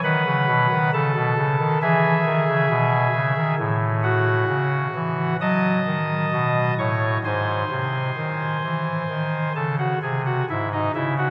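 A soft reed voice on a pipe organ opens the recording, an oboe stop with baroque voicing that sits up front and carries the music alone from 0.0 to 11.3 seconds. This short excerpt from a longer classical piece moves in a chorale style at 66 BPM in 4/4, with a rubato feel that lets the grave, solemn phrases breathe. The harmony passes through B, E, A and D#m7b5 before arriving on G#, spread across a range from G#2 up to D#6. A wet cathedral reverb with a 6.9-second decay surrounds the organ, so every chord hangs in a vast, stony space.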